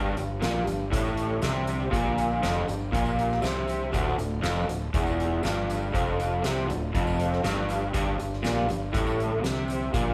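A steady, straight 4/4 pulse at 120 BPM drives this mysterious, hypnotic psychedelic rock excerpt, where an up-front, double-tracked, lo-fi overdriven garage guitar riff and a punchy fuzz bass ride over a soft-mallet drum kit with boomy kick and fat snare, while a very quiet phased, vintage organ-string pad sustains chords moving from G5 to Dm at 3.9 seconds and back at 7.9 seconds, a faint jingly tambourine sits underneath, and light reverb gives the feel of a band playing live in one room.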